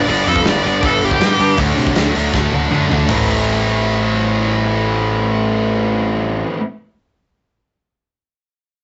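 A rough rehearsal-room recording with light reverb and a saturated, dull top end opens this raw, aggressive punk rock fragment, cut from a longer piece. A nasal lead guitar with a parked wah, overdriven and up front, plays a short solo melody that stops at 1.6 seconds as the chords move from G to D. Underneath, two picked electric guitars drive the riff: one sludgy and overdriven, the other tight, bright and distorted, sitting up front. A punchy, fuzz-laden picked bass, overdriven and direct, holds the low end. A loose acoustic indie drum kit with a mid-forward small-room sound, a punchy kick and a medium-tuned snare plays hi-hat, kick, snare and toms, moving into a fill at 2.3 seconds before dropping out at 3.2 seconds, just as the next section lands on A minor.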